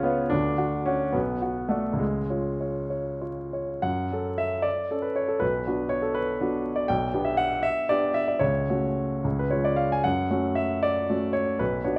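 Bittersweet and passionate, this romantic classical character piece for solo piano unfolds in F# minor in a rubato 6/8 at 62-83 BPM, its polished, present baby grand sitting up front with a short sustain across a range from B1 to G#5, moving through chords such as Dmaj7, Bm and G/B before settling on F#m at 10.1 seconds, all set in a moderate recital-hall reverb within a dark, warm production flecked with vinyl crackle, in a brief fragment cut from a longer work.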